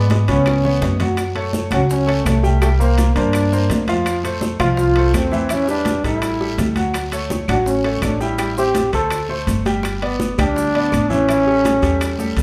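A clear, punchy trombone carries the festive, joyful salsa melody with light vibrato and a slapback echo from the start, over a bright baby grand piano with audible action noise and a dark, thumpy pizzicato upright bass up front. At 0.1 s, low-tuned bongos, background congas, ringing timbales and a raspy guiro come in, followed by a drum fill, woody claves at 0.5 s and grainy maracas at 1.2 s. The sound sits in a moderate large studio reverb, heard from further back in the room, in a fragment cut from a longer piece.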